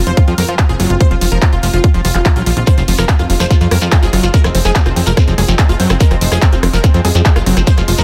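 A tight, overdriven electronic kick sits up front in this hypnotic, driving psychedelic trance passage at 144 BPM in F phrygian, joined by an overdriven drum and bass kit with handclaps, rim clicks and bright hi-hats, and a punchy, funky analog bass plucking beneath on an F5 chord. A squelchy, resonant acid bass riff pumps through digital delay, while a detuned supersaw stab carries the melody with phaser, sidechain pumping and dub echo, over a bubbling stepped-filter texture that holds sustained chords in the background with chorus, reverb and 12-bit sampler grit. A grainy, mellow shekere enters at 2.7 s, and the dry mix is dense and heavily limited.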